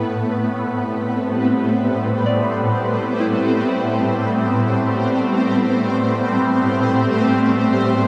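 Ambient music in free time, this brief excerpt from a longer piece feels serene and melancholic, resting on a single Am9 harmony. A shimmering ambient pad sits up front with sustained chords, its ethereal, bright tone built from a triangle wave with an octave-up shimmer, granular texture, slow attack and long release, coloured by chorus, built-in reverb and phaser. Very quietly beneath it, a soft synth bell plays arpeggios in a higher register, its pure, vintage FM tone gently warbling with chorus and decaying after each fast attack. From 2.5 seconds an overtone-sweeping drone fades in on a single held A3 in the background, its resonant sawtooth and sine blend, ring modulation and moving overtones softened by chorus and built-in reverb. The whole is bathed in a long, wet shimmer reverb with a dark production.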